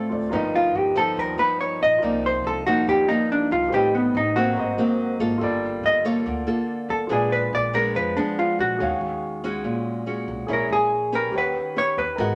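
A dark, clean hollow-body jazz guitar solos up front from the start of this melancholic, wistful bossa nova excerpt at 142 BPM, over fingerpicked nylon-string guitar and an intimate, polished grand piano with audible action noise, while woody pizzicato upright bass enters at 0.1 s. Rich altered and extended chords carry the G minor harmony until the music moves to E-flat minor at 8.8 s. Moderate studio reverb lends a gentle sense of space.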